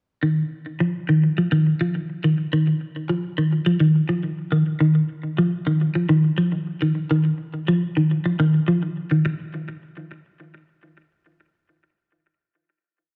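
A wet echo chamber gives this short afrobeat piece a roomy, reverberant sound with a tail of about 1.7 seconds. The mood is funky and hypnotic, moving at 105 BPM in a straight 4/4. The only instrument is a semi-hollow electric guitar, clean and picked, with a scooped, hollow-body tone that sits up front. It plays a repeating ostinato in a narrow low register between Eb3 and F3, colored by phaser and tape echo, from 0.2 seconds until 9.3 seconds. The groove then gives way to a final chord that carries the piece to its close at 11.5 seconds.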